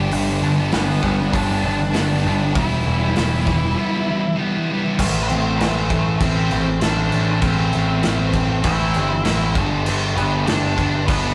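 A straight 4/4 groove at 99 BPM drives this brooding, cathartic quiet-loud alternative rock passage, with an up-front acoustic drum kit of punchy kick, medium-tuned snare, hi-hat and gleaming crash, and a growling, overdriven picked bass sitting just as close. A biting high-gain guitar and a thick, murky fuzz guitar stack riffs over G and Em until the fuzz part stops at 5.0 s, as the chords move to Am and back to G while a dark octave-fuzz lead guitar carries the melody throughout. Moderate studio reverb and warm saturation give the piece the rough feel of a rehearsal-room take, cut from a longer performance.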